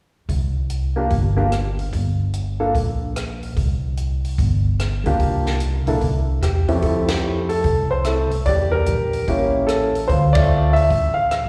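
Upright bass and a compact cocktail drum kit open this swinging jazz piano trio at 0.3 seconds, the pizzicato steel-string bass woody and up front, the kit dry and natural with dark cymbals, a high-tuned snare, a tight kick, hi-hat, ride and rim clicks. An upright piano enters at 1.0 seconds to carry the melody, its warm tone full of long sustain and touched with slapback echo, as the harmony moves through chords such as C7sus4, A7b9 and Dm9 at a brisk 147 BPM in 4/4. This short cut from a longer piece sounds like a live gig heard through the venue's PA, with recital-hall reverb and small-room ambience, and the band hits a shared accent at 7.0 seconds as the second section begins.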